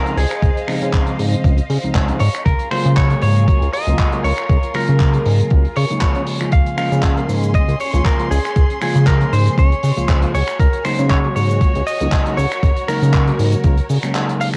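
Recorded at home on cassette with little reverb, this sunny, feel-good nu-disco clip at 118 BPM swings lightly on the 16ths as it moves through Dbmaj9, Gbmaj9/Db, Bbm7/Db and Ab9sus4/Db. A thumpy, sampler-style electronic kick sits up front beside a glossy, chorused synth bass with a filter pluck, while a dry, damped 70s kit adds cabasa, finger snaps, handclaps and hi-hat with studio reverb. A worn, slightly out-of-tune tine electric piano, lightly overdriven and pumping, carries the accompaniment under distant bowed violin chords, and a bright, twangy clean electric guitar plays the melody through analog delay until 14.5 seconds.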